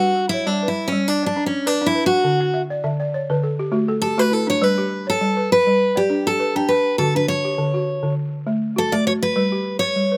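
Recorded outdoors with little reverb, this short excerpt from a longer piece has a close, open-air sound that puts both instruments up front. It is a hypnotic, flowing West African traditional piece in G Lydian at 101 BPM in 4/4, with a gentle swing on the sixteenth notes and tuning set slightly low at A4 = 438 Hz. A picked steel-string dreadnought carries the melody as a solo throughout, its fresh strings giving a bright, full-bodied tone in the range from C#4 to D5. Beneath it, a balafon played with soft rubber mallets spins arpeggios from D3 to F#5, its woody, buzzing voice dark and smooth. The balafon adds a fill between 2.4 and 4.6 seconds, while the harmony moves between G and D chords, passing through a D5 and coming to rest on G at 9.4 seconds.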